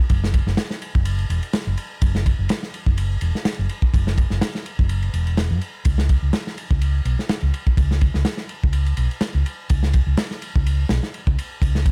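Funky and swaggering, this dry breakbeat excerpt at 125 BPM in 4/4 with a light 16th-note swing pairs a round, amped hollow-body short-scale fingered electric bass, ranging from E1 to F#2 and thickened by tube saturation, with a crunchy, gritty acoustic drum kit of tight kick, medium-tuned snare and dark ride cymbal, both parts up front from 0.1 to 11.9 seconds.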